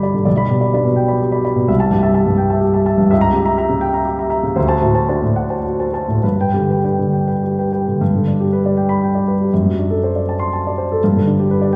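Romantic classical character piece for solo piano, a lyrical, warm excerpt in 6/8 with flexible rubato, where a dark, mellow grand piano with short sustain sits up front, ranging from the deep bass to the upper treble as its harmonies move through G/B, Am7/C, C#dim7 and D7 before settling on G, all bathed in a wet recital hall reverb heard from further back in the room.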